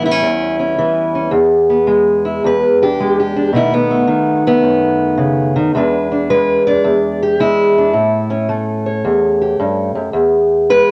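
A swung eighth-note groove at 109 BPM in 4/4 drives this short, rollicking acoustic country blues in E mixolydian, cut from a longer piece. A single fingerpicked steel-string acoustic guitar carries everything, its dark, boxy parlour tone sitting up front and ranging from E2 to D5, with a cassette-tape character coloring its sound. The harmony moves from A7 to E7 and B7 over the first 5.7 seconds, then the guitar takes a solo from 5.7 to 10.9 seconds over E7 and A7 before landing on E. The mood is soulful and rollicking, and the tuning sits slightly below standard pitch. It sounds like a home cassette recording in a small room, with a moderate spring reverb adding a 1.3-second tail.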